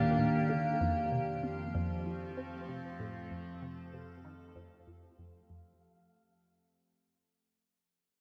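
A straight 4/4 pulse at 96 BPM carries this cosmic, expansive stretch of ambient, sequencer-driven space music, tuned to A4 = 438 Hz and fading out across its full 5.8 seconds as it moves from Ebmaj7 to Fadd9 at 0.8 s. Up front, a morphing wavetable pad holds sustained chords with chorus, phaser and its own reverb, while a juicy, squelchy resonant blip pluck plays a brilliant riff through phaser, delay and subtle chorus. A bubbling stepped-filter texture adds mellow detuned shimmer up high, a fat analog bass sits in the background, and a lush hall reverb soaks the whole dreamy mix.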